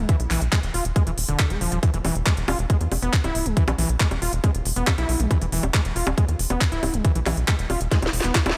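This is a short excerpt of psychedelic trance at 138 BPM in a straight 4/4, with an alien, psychedelic mood. From the first moment a squelchy, resonant acid bass riff runs from D3 to F4, its gritty sawtooth tone distorted, roughened with vintage 12-bit sampler grit, pumped by sidechain and trailed by digital delay. Beneath it, a tight sequencer bass drives from D1 to E2, a dark, punchy blend of sawtooth and square wave with a fast-attack filter pluck that keeps evolving and sits up front. At 0.1 seconds an up-front electronic kick lands with a tight, tape-warm thump, joined by a layered garage kit of cracking snare, crisp hats, handclaps and bongos that carries the sheen of re-recording in a large room. A drum fill arrives at 7.9 seconds, and the overall mix stays dry, with little reverb, over a single E5 chord.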